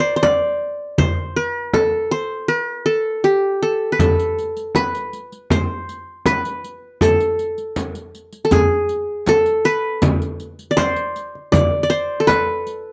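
A bright, plucked qanun carries a melancholic, longing melody up front in this short excerpt of Arabic maqam ensemble music, supported by a hard-handed frame drum, a small clay darbuka set in the background that sounds briefly at the start and again from 10.0 s, and a riq with dark jingles that joins at 4.0 s, the whole captured as a dry, close 1970s-style studio recording with light reverb.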